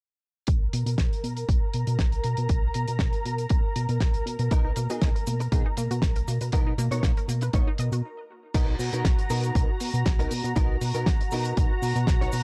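A punchy, up-front electronic kick and a damped 70s drum kit with a fat snare, dark cymbals and hi-hat drive this sunny, groovy nu-disco excerpt at 119 BPM in straight 4/4, with a glossy chorused synth bass carrying a filter sweep in B major over sustained Bmaj7 harmony from a lush, detuned unison pad with sidechain pumping. At 4.5 s a bright, clean direct-recorded electric guitar riff with ensemble chorus and analog delay enters alongside a background cabasa and a warbling unison pluck playing arpeggios until 8.0 s, when the music stops briefly before Bmaj7 returns at 8.5 s. The sound is dry and gritty, with a cassette-tape character throughout.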